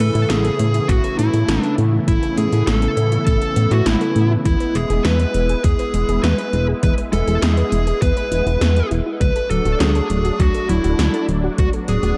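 A dark, smooth overdriven electric guitar carries the melody up front from the start, its picked lines trailed by tape echo over a silky, string-like analog pad that pumps with sidechain and a glossy, chorused pulse-wave synth bass. This nostalgic, romantic synthwave excerpt moves at 101 BPM in a straight 4/4 through A major chords, with a soft, round, warbling pluck arpeggiating in the background through chorus, delay and vintage 12-bit grit. Eighties drums with a gated snare and metallic hats ring in a large room, joined at 0.9 seconds by a thumpy, overdriven electronic kick, all set in light digital ambience.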